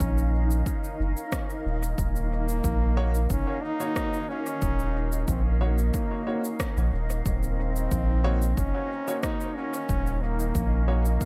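Ambient dub at 91 BPM in Eb dorian, meditative and hazy, where a mellow, close-miked trombone carries the melody through dub echo over a soft, round sub bass held up front, a blurred, evolving granular pad on an Ebm7 chord, a punchy overdriven electronic kick with a shaker and rim click, and, from 3.0 seconds, clear, woody upright piano stabs with audible action noise echoing back, all in a dry mix cut from a longer piece.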